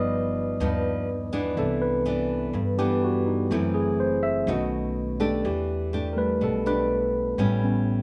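Sunny and romantic, this bossa nova excerpt features a bright, barky tine electric piano taking a solo throughout, lightly overdriven through a combo amp and sitting up front. A fingerpicked classical nylon-string guitar, also up front, and a woody pizzicato upright bass accompany it over a chord sequence moving from G7b13 through Cmaj9, F#m7b5, B7 and Em7 to A9. Light reverb gives the trio a small-room ambience.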